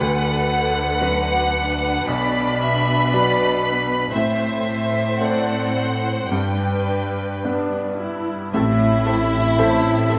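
A sorrowful, bittersweet cinematic passage in A dorian opens at a slow, rubato 53-60 BPM, with an up-front, lush violin section singing the melody in vibrato over a close second violin line, a portamento-touched viola section and a rich, bowed cello bass, all framed by the brilliant, long-sustaining ring of a baby grand piano. At 8.5 seconds a clear solo oboe and an intense double bass section enter, while a soft-attack clarinet and a mellow, vintage-toned French horn section join in the background. A wet scoring-stage reverb lends the cut-out fragment a spacious hall glow.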